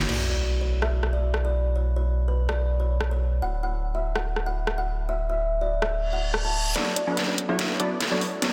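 Lush and euphoric, this future bass excerpt moves at 144 BPM in 4/4 with a half-time feel, cut from a longer piece. A woody, hollow-toned kalimba carries the melody throughout, sitting up front with a soft, ringing pluck shaped by a low-pass filter and tape echo, and a filter sweep on it during the closing build-up. Beneath it, a deep, thick saturated sub bass holds down the low end over Bmadd9 and Dadd9 harmony until 6.7 seconds. The overdriven, layered pop drum kit, re-recorded in a small room and placed up front, brings a deep snare, rim clicks, hi-hat and crash cymbal, with a drum fill driving the final stretch. An opening band accent and impact with a sub drop give way to a reverse cymbal at 6.1 seconds, after which a punchy, detuned supersaw stab returns at 6.8 seconds over a Bm9 chord as a riser builds. A lush hall reverb spreads around the parts, and the master is dense and heavily limited.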